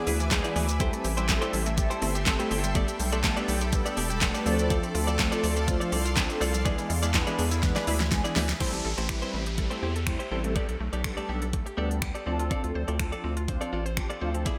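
A straight 4/4 pulse at 123 BPM drives this confident, bittersweet dance-pop excerpt in A minor, where a layered electronic drum kit with a knocking kick, fat snare, crisp hats, snaps, claps and shaker in gated reverb sits up front beside a deep, round analog bass, while dark detuned synth brass and woody, percussive synth pluck arpeggios with delay ride the sidechain pumping and a twangy direct-recorded clean electric guitar plays a riff; a shimmering, ethereal pad holds sustained chords until 8.6 s, when a drum fill gives way to an electronic downlifter, all set in a bright 1980s-style digital sheen with moderate plate reverb.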